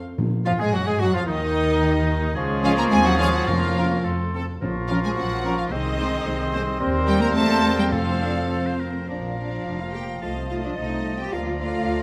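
Heard in a moderate scoring-stage reverb, this stormy, dramatic classical-period orchestral excerpt in 2/4 with a rubato feel puts a lush, expressive violin section on the melody over rich bowed double basses and portamento cellos, while a clear second violin section, a bright oboe, a clarinet and an airy flute group carry second lines, a mellow bassoon and focused violas accompany, a French horn section holds sustained chords, a trumpet section adds stabs until 8.8 s, and hard-mallet timpani strike at intervals from 0.2 s.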